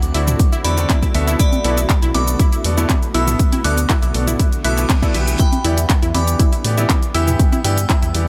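A punchy, layered electronic kick sits up front in this driving, dreamy progressive house excerpt at 120 BPM in E minor, entering at 0.4 seconds over a big-room dance kit of cabasa, handclaps and hi-hat. Beneath it, a round, deep analog bass blending sawtooth, sine and triangle tones pumps against the sidechain, while electronic toms and congas with a tape-warm character sit in the background, also pumping. A glassy, crystalline FM bell carries the melody high above, treated with chorus, phaser, digital delay and sidechain pumping. A lush, detuned unison pluck spins arpeggios through delay, and a brilliant baby grand piano adds pumping stabs, all over a shimmering, ethereal pad that holds granular, evolving chords very quietly. The harmony moves from D7 to Bm7 and settles on Em7 at 5.4 seconds, just as a reverse cymbal running from 4.8 seconds ends within the digital ambience.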